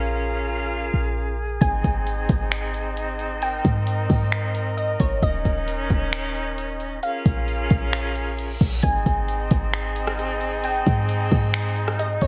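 Blissful and dreamy, this atmospheric cloud-rap excerpt drifts in a half-time hip hop feel over chords moving between Bbm7, Abmaj7 and Eb5. A breathy, bright flute section holds sustained chords with gentle vibrato and a soft attack, pumping under sidechain compression. Above it, a glassy wavetable pluck carries the melody with a crystalline, digital edge, a faint noise layer, a filter sweep, chorus, low-pass filtering and delay. A clean 808-style bass sits deep and boomy, its sine tone striking fast and decaying mellowly. A smooth, electronic R&B drum kit enters at 1.6 s, up front, with finger snaps, metallic hats, rim clicks and a soft kick that carries the air of a large room, and a reverse cymbal rises at 8.3 s into the next passage. The whole piece has light reverb and a bright 1980s-style digital production sheen.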